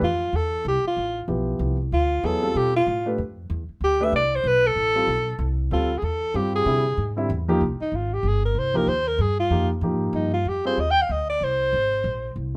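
A moderate club reverb surrounds this cool, hypnotic modal jazz fragment at 190 BPM in a swung 3/4, where an up-front breathy alto saxophone with vibrato, subtone and scooped notes carries the melody, a woody, thumpy pizzicato upright bass holds the low end, and a warm concert grand piano with deep bass accompanies from 1.3 seconds, before the key moves from D dorian to F dorian at 7.6 seconds for an alto saxophone solo over Fm9.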